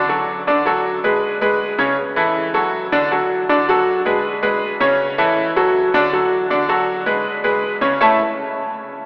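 Heard with an AM-radio tone and a wet cathedral reverb in a church or concert hall, this short, festive and danceable Latin piece at 159 BPM in A major is carried by a bright, worn concert grand piano playing solo from 0.0 to 8.2 s, intimate and up front with deep bass and audible action noise as it cycles through Bm7, G#madd11, A and D.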